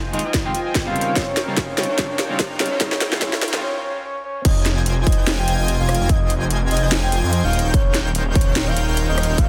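Future bass in F minor at 146 BPM, this emotional, lush clip moves in a half-time feel with a light swing on the sixteenths and is cut from a longer piece. A build-up opens on a smooth, sidechain-pumped supersaw riff under a low-pass filter, joined by a very quiet riser, a round octave-layered synth lead carrying the melody through chorus, tremolo and digital delay, and a twangy, slightly broken-up electric guitar accompaniment that drops out at 3.6 seconds. A trap kit with a sharp snare, metallic hats, rim clicks and crashes plays a fill, while a punchy, tape-warm electronic kick sits up front from 0.3 seconds. After a short break, the drop lands at 4.5 seconds, bringing a thick, detuned saw bass with chorus and an airy, dreamy arpeggiated lead glinting high in the background. The harmony moves between Fm7 and Eb13, set in light reverb and digital ambience on a dense, heavily limited master with a faint mains hum.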